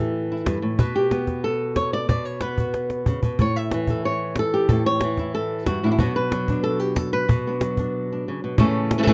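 In a dry, close small-room sound with a 1970s studio character and lossy compression artefacts, this short, dramatic and passionate flamenco cut from a longer piece puts a fingerpicked acoustic flamenco guitar up front carrying the melody with audible finger squeak, joined at 0.5 s by a woody cajon played with soft hands and faint snares that adds a drum fill at 2.7 s before a break at 7.9 s.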